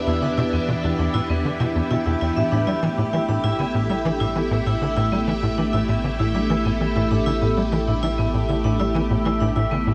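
Bathed in a huge, wet ambient reverb, this mysterious and expansive excerpt of sequencer-driven space music moves from Em7 to A5 as a tight, nasal sequencer bass riff drives beneath swirling, phased string-machine chords, ringing vibraphone arpeggios with delay and shimmer, a bubbling, resonant stepped-filter texture, and a round, deep analog bass that fades in across the full 9.9 seconds.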